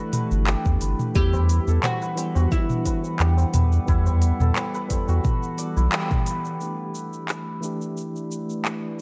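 A loping 4/4 groove with a light swing on the sixteenths drives this hypnotic, meditative piece of organic downtempo, cut from a longer track. An afro-pop drum kit of handclaps, smooth hi-hats, shaker and toms sets the pulse almost from the start, joined by a deep electronic kick at 0.7 seconds and, briefly, a low-tuned, close tabla tucked in the background. Underneath, a round sine sub bass sits up front with sidechain pumping. A clean tine electric piano, filtered and delayed, shares the harmony with a nostalgic, detuned, lo-fi pad that warbles with chorus and its own reverb. Over this, a shimmering hammered santur plays arpeggios through digital delay, while a bright, woody, plectrum-plucked oud carries the melody with tape echo until 5.9 seconds, when the band hits an accent shortly before the music moves into a new section at 6.6 seconds. The chords shift from A7sus4 to E minor, and the whole sits in a dark production with light reverb and digital ambience.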